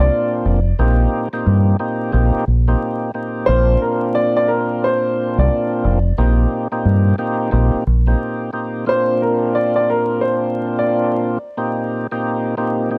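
Laid over a swung sixteenth-note feel at 89 BPM in 4/4, this soulful boom-bap hip-hop fragment, cut from a longer piece, sits in Bb major and alternates between Bbadd9 and Eb6/Bb. A woody, vintage upright piano carries the melody in a narrow upper range, filtered at both ends and touched with tape echo, until it stops at 11.1 seconds. Beneath it, a full, percussive tonewheel organ supplies the accompaniment, its key click and second harmonic percussion turning through a slow rotary speaker with cassette tape colour and filtering, and it plays through to the end at 13.0 seconds. A deep, round, dub-style fingered electric bass sits loudest in the mix, dark and amped, before it drops out at 8.1 seconds. The sound is dry and gritty, like a hardware recording, with vinyl crackle and barely any reverb, giving the whole thing a close, warm, intimate feel.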